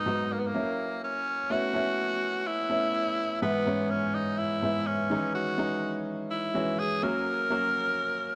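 In a straight four-beat pop groove, this urgent, moody excerpt pairs a raspy, gritty tenor saxophone solo, forceful and up front with vibrato, scooped notes and delay, against a clear, polished baby grand piano accompaniment, both heard together throughout. A new section begins at 1.5 seconds, moving through Aadd9, E/G#, C#madd9 and F#, all set in a moderate plate reverb.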